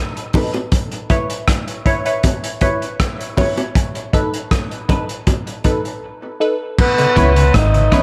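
A straight 4/4 groove at 79 BPM drives this heavy, spacious dub reggae excerpt in C# minor, built on a crunchy, saturated breakbeat kit that sits up front with a punchy kick, rim clicks, hi-hat and dark crash cymbal. Over it, filtered chord stabs made from detuned sawtooth tones pluck and decay, deep and evolving, colored by a phaser and dub echo. Low-tuned bongos played with hard hands echo in the background until 5.8 seconds. The harmony moves between B7 and C#m7 through a long break, set in a moderate spring reverb. At 6.8 seconds a new section opens as a tenor saxophone takes a distant, roomy solo with light vibrato and dub echo, and at 7.0 seconds a soft, flute-like tonewheel organ with key click and chorus vibrato slips in behind it. From 7.2 seconds a clean, picked electric guitar with echo and a round, foam-muted fingered bass, deep and up front, fill out the close.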